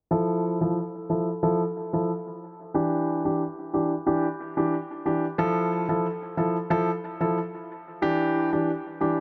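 A straight 4/4 dancehall groove at 91 BPM carries this hypnotic, sultry cut from a longer piece, played by a lone grand piano from 0.1 to 9.2 seconds, ranging from E3 to A4. The dark, mellow piano sits up front, trailed by dub echo and a moderate spring reverb in an echo-heavy, low-passed mix, with a filter sweep running through the first 5.4 seconds. Its chords alternate between Fmaj7 and Em7, with the second pass beginning at 5.4 seconds.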